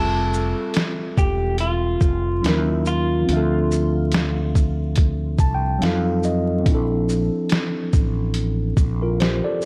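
A dark, slightly broken-up electric guitar melody opens this dreamy, nostalgic lo-fi hip hop excerpt over a mellow tine electric piano played through its built-in speakers and a round, punchy fretless bass, all under a layer of vinyl crackle, with a muffled, pitched-down sampler-style drum kit joining at 0.3 seconds with a thumpy kick, snare, hi-hat and shaker. The swung groove drifts through lush chords from Fmaj7 to Bbmaj9#11, and the electric piano adds a fill from 5.0 seconds. The guitar drops out at 6.2 seconds, leaving the clean, warm keys, bass and drums.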